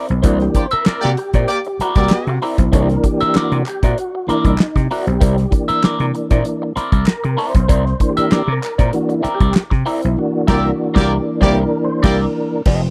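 A dry, close 1970s-style studio sound with a small room's reverb frames this energetic, strutting funk, cut from a longer piece and moving at 97 BPM in 4/4 over a C9 chord in C mixolydian. The percussive tonewheel organ takes the solo throughout, its round, dark tone carrying key click, chorus vibrato and a fast rotary speaker, backed by a punchy slap bass, a damped 70s kit with a fat snare and tight kick, and a twangy wah guitar at the edge of break-up. A horn section with light vibrato joins the band accents at 0.6 s and returns at 10.5 s, while crisp, band-limited group handclaps sit low in the mix.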